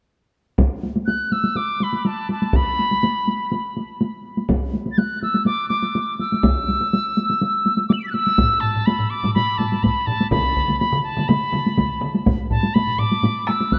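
Hard-stick taiko drums open this driving, powerful Japanese taiko ensemble piece at 0.6 s, close and up front at a straight 123 BPM in 4/4, and a pure, bright piccolo enters at 1.1 s with a soft-attacked, unsteady straight-tone melody in E suspended pentatonic that climbs as high as F#7. From 8.4 s more taiko sets in, heard in a live room, thickening the percussion as this cut from a longer piece moves into its second section. A further live-room taiko group joins up front from 10.3 s to 12.1 s. A moderate, huge ambient reverb lingers around the ensemble, giving the sense of listening from further back in the room.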